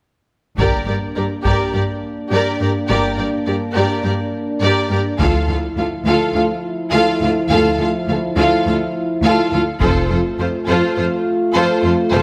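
A dramatic, relentless stretch of epic orchestral film score opens at 0.6 seconds with the full string body, French horns and a hard-sticked taiko ensemble striking together over a G minor chord, moving at 104 BPM in a straight 4/4 in G dorian. A focused, distant violin section carries the melody high above, while a second, more expressive violin section sings a line just beneath it and a smooth, even viola section fills in the accompaniment. Mellow French horns hold sustained chords with a light vibrato, and a clear cello section and the double basses together anchor the bass with bowed, vibrato-rich lines. The taiko return in close, acoustic bursts at 5.2 seconds under a Dmadd9 and again at 9.8 seconds as the harmony moves to F. A moderate scoring-stage reverb gives the lush strings and horns a spacious, cinematic bloom through to 12.2 seconds, in a passage cut from a longer piece.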